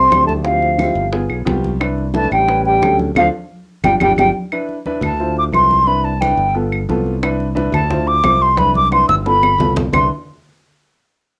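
An airy, mellow silver flute sits up front with vibrato, carrying the melody through this lively, sophisticated Afro-Cuban jazz excerpt at 177 BPM in C major, over a breathy trombone second line that drops out at 4.3 s, a bright, growly fingered electric bass, a woody upright piano, and background congas, claves and round bongos that pause and return at 7.2 s, with flute, trombone and piano carrying a cassette tape tint in a small-room home cassette recording that features a band accent and a late drum fill.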